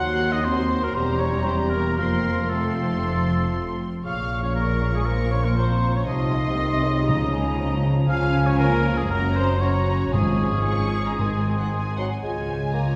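A warm solo oboe stands out in this dramatic, stormy excerpt from a quick classical-period orchestral movement, its light vibrato colouring a second line set just beneath the melody. That melody belongs to a muted violin section, veiled and distant under the mute, joined in the same register by a small flute group whose hollow, airy timbre carries a crisp attack. A second muted violin part, a bowed viola section and a soft-edged bassoon fill the middle, while a tight, mellow French horn section holds sustained chords in the background. Underneath, muted cello and double bass sections give a dark, lush foundation, joined by round, soft-mallet timpani from 7.1 to 11.9 seconds as the harmony moves from minor-key shadows toward a brighter major close. A dark, roomy clarinet slips in at 12.2 seconds just as the passage settles, and the whole orchestra sounds heard from further back in a reverberant scoring stage.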